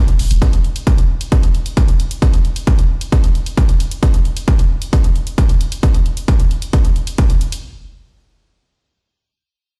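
Driving peak-time techno with an industrial edge, built on a heavy, layered electronic kick drum that sits up front with a tape-warm weight from about 0.4 seconds, while a dry, overdriven analog electronic hi-hat pumps against it from the start, all sounding as if played on a big sound system in a bare stone room.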